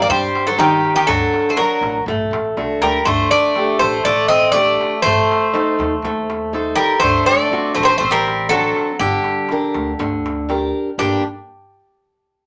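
Dramatic and tense, this short cut from a longer Greek folk piece for bouzouki band moves at 121 BPM in a straight 4/4, set in G harmonic minor. Two Greek bouzoukis sound from the very start: the lead carries the tune up front with a bright, metallic sparkle of picked double strings in its upper register, while the second bouzouki traces a lower line beneath it with the same octave-doubled shimmer. A picked steel-string acoustic guitar joins at 0.1 seconds, also up front, giving a warm, auditorium-sized body to the accompaniment across its broad range. Underneath, a woody pizzicato upright bass anchors the low end, and a crisp metal-shell darbuka struck with hard hands stays in the background. The harmony winds from Cm through D, Dsus4, Adim and D7 before landing on Gm at 9.0 seconds, heightening the suspense. A wet small-room reverb draws the ensemble close together, and a brief new passage begins at 11.0 seconds as the cut ends.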